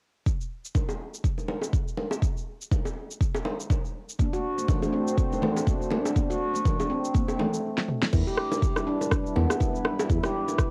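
An overdriven, deep electronic kick sits up front through this driving, earthy afro house excerpt at 122 BPM in E minor, joined by a tape-warmed deep house kit with a fat snare, cabasa, rim click, crash and toms, plus tight, high-tuned bongos played with soft hands. At 4.2 seconds a ringing, meditative handpan enters up front with arpeggios through analog delay, over a detuned, chorused analog pad in the background on D7 and bright, band-limited congas played with hard hands. After a drum fill, a smooth sawtooth bass arrives at 8.1 seconds on Em7, with the pad, handpan and bass all pumping to the sidechain in a lightly reverberant home cassette recording.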